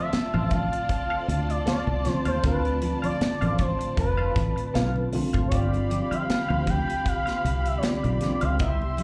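Heard through a club PA with light reverb, this silky, cinematic excerpt of lush 1970s-style soul at 78 BPM in D dorian sets a smooth sawtooth lead with chorus, vibrato, portamento and slapback echo over a distant bowed violin section, a mellow tine electric piano, a compressed clean guitar riff with wah, a punchy fingered bass, a tight, airy drum kit and saturated congas in the background, with the harmony moving from Dm7 to G7sus4 at 5.5 seconds.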